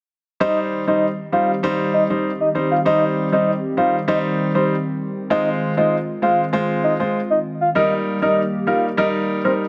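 A sultry, tough dancehall excerpt in straight 4/4, built on a short run from C minor through Ab6 to Eb. A soft, round, octave-layered synth lead carries the melody from 0.4 s with chorus, tremolo and delay, its dark sub-octave body set over a clear, polished baby grand piano that sits up front with the accompaniment. A hollow, flute-like pad enters at 0.8 s with slow-attack sustained chords and a detuned chorus shimmer, all in light reverb and studio ambience.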